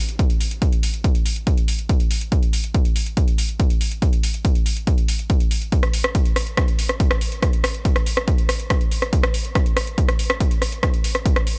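Intense and hypnotic, this techno excerpt drives forward at 141 BPM in a straight 4/4, built entirely from drums. A punchy analog kick sits up front from 0.2 to 11.3 seconds, while a layered electronic kit supplies metallic hi-hats and rim clicks from 0.1 seconds onward. The sound is dry and close, with little reverb.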